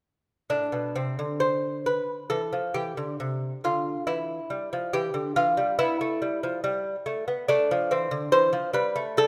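A moderate scoring stage reverb with a 1.5-second tail surrounds a solo lute placed up front, its gut strings and double courses giving a delicate, fingerpicked tone with some octave-doubled strings. This short classical fragment, cut from a longer baroque-style dance in A minor, moves at a rubato 69 BPM in 4/4, spanning A2 to C5 from 0.5 to 9.3 seconds. The introspective, solemn mood settles from A minor to E minor before resting on an open A chord.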